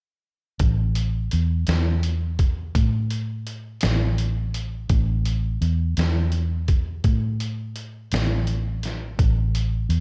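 Brooding and mournful, this slow blues moves at 56 BPM in a 12/8 metre with a straight feel, cut from a longer piece. A vintage muted fingered electric bass and a lo-fi sampler-style drum kit enter together at 0.6 s and carry the passage through to its close at 10.0 s. The bass sits up front, dark and round, its amped, foam-muted tone holding the low register between A1 and A2. The drums are compressed and pitched down, with a thumpy kick, a medium-tuned snare and hi-hat, all heard through a muffled sampler grain and the air of a large room they were re-recorded in. Little reverb surrounds the pair, leaving a close, heavy groove that feels weighed down and grieving.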